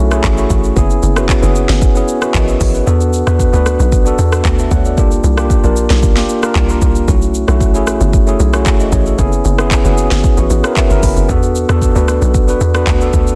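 This amapiano excerpt moves at 114 BPM in a straight 4/4, with a deep, soulful mood and a tuning of A4 = 441 Hz. A clean tine electric piano sits up front, voicing suspended ninth chords that cycle through B9sus4, F#9sus4, E9sus4 and C9sus4, heard as if through built-in speakers. Beneath it, a tight log drum bass gives punchy, percussive, decaying notes with a fast attack, its FM tone carrying a layer of noise. The produced afro-pop drum kit is up front too, pairing a deep kick and sharp snare with smooth hi-hats, handclaps, rim clicks and shaker. The kick briefly drops out at 2.9 seconds, and the electric piano adds a short fill at 10.5 seconds. Digital ambience surrounds the parts, and the whole is a dense, heavily limited modern master.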